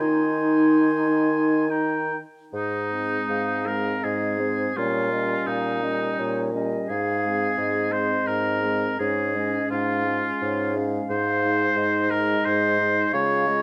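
A wooden baroque flute opens this tender, warm slow movement for wind quintet, carrying the melody high with a pure tone, vibrato and tongued notes, while the other four players sound together from the first moment. Alongside it, the oboe shapes a second line with a soft attack and light vibrato, sitting up front yet sounding distant and roomy. A dark clarinet and a French horn with a smooth top and vibrato fill in the accompaniment from the background, and a mellow bassoon anchors the bass with light vibrato near the front. The music moves in a flexible triple metre with rubato; after a brief opening phrase a new section begins at 2.5 seconds, and the harmony shifts gently through several chords to a fresh colour around 9.0 seconds. Close, detailed microphones catch each instrument within a moderate recital hall ambience, and the recording is cut from a longer piece.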